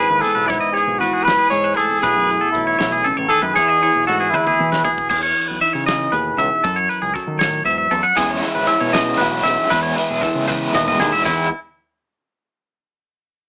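Heard through a small-speaker sound in a moderate room, this wistful, playful math rock and midwest emo passage in a straight 6/8 opens with a clear, punchy trumpet melody carrying slapback echo that stops at 4.9 s, over a dark, compressed clean guitar accompaniment, bright twangy guitar arpeggios with tremolo and slapback echo, a growling fingered bass with overdrive, and a loose indie drum kit with a fat snare and tight kick that plays fills at 4.3 s and 10.5 s, before a double-tracked overdriven guitar riff with tremolo pushes up front at 8.2 s.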